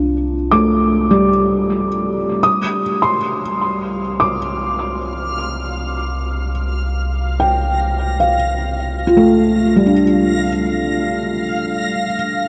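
A felt-muted upright piano plays intimate, mellow arpeggios with audible action noise and tape echo over a deep, ominous rumbling drone, moving from Csus2 to Cm7 at 2.4 s in a reflective, spacious ambient passage in 3/4, cut from a longer piece, before a reversed, dreamy granular texture fades in from 3.8 s, all set in a huge, wet reverb.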